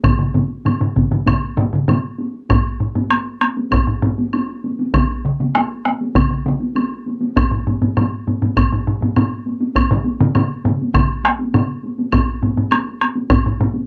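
Two solo taiko drums, two taiko ensembles and a woodblock all strike together from the start in this powerful, driving Japanese traditional drum excerpt in 4/4 at 100 BPM, gradually speeding up with a straight feel and a new section arriving at 2.5 seconds. The solo drums sit up front, one struck with hard sticks and sounding vintage and band-limited, the other struck with heavy sticks and sounding close and dry, while one ensemble sounds distant in a large room and the other has a similarly aged, narrow tone; the woody woodblock rings in a live room beneath them. A wet booth ambience and worn cassette tape with warbly pitch drift color the whole recording, and one ensemble drops out at 11.7 seconds before the rest finish near 13.9 seconds.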